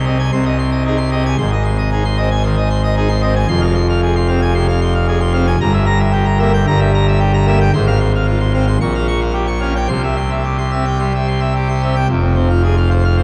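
A dark production bathed in a long, wet church reverb frames this short, stormy cut from a classical organ toccata at 113 BPM in straight 4/4. The pipe organ plays alone and up front throughout, its full registration with bright mixtures and audible chiff spanning F1 to Db6 in a majestic, baroque voicing. The harmony opens in Ab major, turns to F minor at 3.5 s, passes through diminished and half-diminished colours to a C major chord at 9.9 s, and settles on F minor at 12.1 s.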